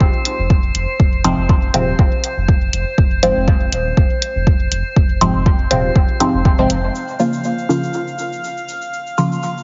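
Heavily compressed and dulled like a radio broadcast, with light digital ambience, this hypnotic, meditative dub techno fragment moves at 121 BPM in 4/4 with a gentle swing on the sixteenths, set in Bb minor. An overdriven electronic kick and hi-hat sit up front, both layered, the kick deep, with the grit of a small room, while a round sine sub bass pumps beneath them with tube saturation. From the start, a glassy texture of drifting overtones floats high above on a slow attack and long release, softened by chorus and reverb. At 1.2 seconds a muted, detuned sawtooth chord stab enters, its filter pluck decaying through phaser, chorus and dub echo into an evolving, mellow haze. The harmony rests on Fm until 6.9 seconds, when it shifts to Bbm just after the kick, hi-hat and bass have fallen away, leaving the stabs and glass texture joined at 7.0 seconds by a grainy, acoustic cabasa.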